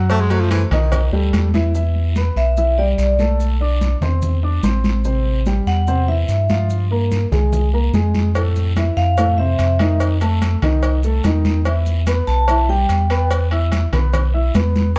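A concert grand piano with long sustain and a deep, round analog bass set up front open this driving, fiery Afro-Cuban jazz excerpt in E minor at 145 BPM, as a brilliant baritone saxophone with tape echo flashes a brief solo at 0.1 s over thin-skinned congas, tight, saturated cowbell and bongos, a raspy guiro and grainy maracas in the background, before a metallic, ringing vibraphone with plate reverb and slow motor vibrato carries the melody from 2.4 s to 13.3 s within a dark, warm production with light reverb.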